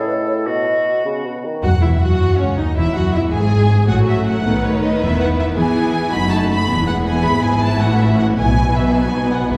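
This is a quick classical-period orchestral movement in 6/8 and E major, moving at 107 beats per minute in a spirited, lively mood, cut from a longer piece. It opens with a brief woodwind passage: an airy, hollow flute with vibrato and a mellow clarinet sitting in the background share the second lines with a distant, roomy oboe, while a bassoon with light vibrato supplies the accompaniment. At 1.6 seconds the strings take over, with a smooth, even violin section carrying the melody in vibrato and a rich, expressive second violin section beneath it. The focused violas accompany, while the cellos, soft in attack and sliding with portamento, join a lush double bass section on the bass line, the harmony moving from Esus2 through B7 and back to E before closing on B. Timpani played with soft mallets give a round tone in the background, heard at 1.6 seconds and again from 8.4 seconds to the close. 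The whole ensemble sits in a wet concert hall with a 2.1-second reverb, heard from further back in the room.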